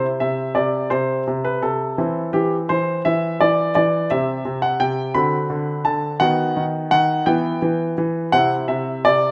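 A bright, polished concert grand piano plays alone from the start, spanning C3 to B5 with a deep bass and an up-front, short-sustained tone. This cheerful, playful classical-period sonatina fragment moves in a straight 6/8 at 56 dotted-quarter beats per minute in C major, its harmony passing through C/E, D7 and B/D# to E minor before settling on C at 8.3 seconds. Close, detailed miking captures every note, set in a moderate recital hall reverb.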